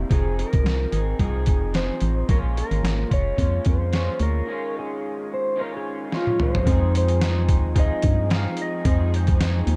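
This lonely, mellow bedroom-pop cut of a longer indie pop piece opens at once with a dark, clean lap steel carrying the melody with slide and volume swells, over a lo-fi, slightly broken-up electric guitar whose analog chorus adds a warbly pitch drift. Beneath them sits an up-front, hollow FM bass with an organ-like, percussive attack, joined at 0.1 s by a gritty, pitched-down trip hop sampler kit with a thumpy kick, medium-tuned snare, hi-hat and toms, all pushed through overdrive. The groove moves at 110 BPM in 4/4 with a light 16th-note swing, cycling through Fm7, Bbm7 and Eb9sus4 in F minor before a break and a short drum fill return it to Fm7. At 6.7 s round, detuned analog keys with a filter sweep and a cassette-tape tint slip in behind, and a very quiet, silky string machine adds long sustained chords from 7.6 s. The production is dry, dark and warm, with the bass and drums leading the mix.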